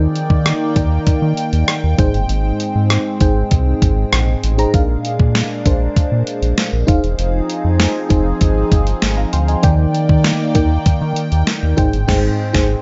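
An FM electric piano with a soft pad layer anchors this romantic, glossy 1980s-style pop excerpt, its lush, dreamy tone shimmering with chorus and tremolo as it plays full-bodied accompaniment and slips in a short fill at 8.7 seconds. Beneath it, a phased analog pad holds swirling, evolving chords that bloom slowly and linger on a long release. A round analog bass sits up front with a deep, sustained sound, while a clean 12-bit digital drum machine sets a straight 98 BPM pulse in 4/4 with a thumpy kick, medium-tuned snare, rim click, hi-hat and crash, carrying a tape-flavoured, small-room character. The harmony moves through Ebmaj7, Abmaj7, Bb7 and Fm7 before returning to Ebmaj7 and Abmaj7, and the band lands an accent at 12.1 seconds. The dry, dark production keeps the whole sound close, soft-edged and intimate.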